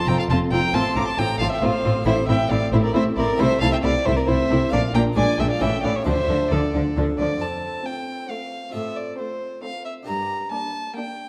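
A solo violin sits up front, its gut-string, period-style tone reedy and smooth at the top with light vibrato as it carries the melody in this dramatic, driving baroque-style concerto movement, cut from a longer piece. Around it, a chamber violin section also takes the melody, reaching higher, while a second violin section holds an inner line, and a viola section fills in the accompaniment from the background. A Flemish-style harpsichord with a full, brilliant sound plucks the continuo beneath, while a cello section, distant and in the background, joins a rich double bass section on the bass line. The music moves at 135 BPM in 3/4, starting in D minor before turning to F major at 7.4 s; the double bass drops out just before that, and the cellos fall away at 10.4 s. A recital-hall reverb lends the dark production a sense of space.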